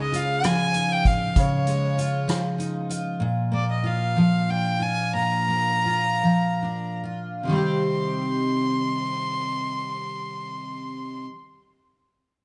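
A 6/8 pulse of dotted quarters moves at 46-65 BPM and slows from 3.2 seconds, giving this excerpt of a pop ballad in C minor an aching, melancholic drag, with tuning set slightly high at A4 = 441 Hz. A soft-mallet drum kit sits distant and roomy in a studio space, with a punchy kick, hi-hat and rim click, but it plays only from 0.1 to 3.0 seconds before falling away. Underneath, a double-tracked steel-string dreadnought guitar picks full-bodied accompaniment, moving from Dbadd9 to Bb before settling on Cm at 7.4 seconds as a new section begins. A single bowed violin carries the melody up front, its tone nasal and earthy with light vibrato, a biting edge and an airy bow. Light reverb and a dark top end round out the sound.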